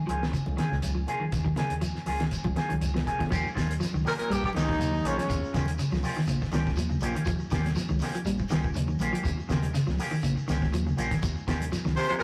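A rough rehearsal-room recording with warm saturation and a moderate stone-room reverb carries this joyful, driving afrobeat groove, lightly swung and cut from a longer piece. A dark, clean electric guitar picks arpeggios through tape echo, while an envelope-filtered second guitar adds picked stabs over a round fingered bass, a dry, damped 70s kit with a fat snare and tight kick, very quiet thin-skinned congas and a grainy, distant shekere. The drums play a fill at 2.6 seconds. Then a horn section bursts in at 4.1 seconds and returns briefly at 12.0 seconds: a gritty, forceful tenor sax up front, a bright, punchy trumpet in the background and a raspy, roomy baritone sax.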